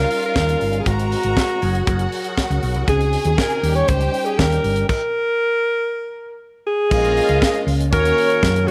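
A breathy, up-front alto saxophone carries the melody over a lush, distant string section, a fat, lightly overdriven tonewheel organ with key click, chorus vibrato and slow rotary speaker, a dark, round hollow-body bass and a tight funk kit with punchy kick and high-tuned snare in this glamorous, driving 119 BPM disco excerpt, which halts for a stop from 4.9 to 6.9 s before smooth pop-style horn stabs with slapback echo arrive at 6.9 s over Bbm7 and Ebm7.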